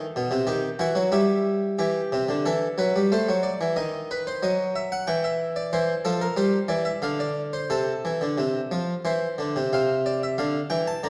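A straight 3/4 pulse at 91 BPM carries this stately yet lively baroque-style two-part invention, cut from a longer piece, for solo harpsichord, whose brilliant, plucked Italian-style tone with octave strings sits up front in a dark production steeped in recital-hall reverb, settling into F major from 5.7 s.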